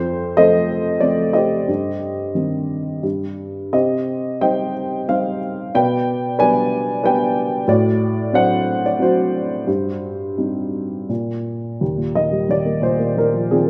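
Classical solo piano in triple metre, this brief excerpt feels sunny and relaxed, its pulse stretching and easing freely under a rubato touch. A dark, woody upright piano with a slightly detuned, vintage character sits up front and carries the whole piece alone, its sound opened out by a moderate concert hall reverb. Near 11.8 seconds the music turns to a new section, settling on an Ebadd9 colour before the recording is cut off.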